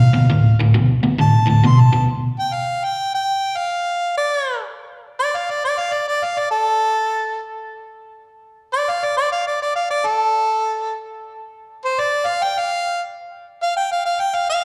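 Heard live through a venue's PA in moderate club reverb, this heavy, gritty swung rock excerpt opens with a crunchy, bright, double-tracked electric guitar riff with slapback echo beneath a clear, close-miked harmonica melody, and once the guitar stops at 2.1 seconds the harmonica, with light vibrato, scooped notes, overdrive, slapback echo and analog delay, plays alone as a solo until 14.6 seconds.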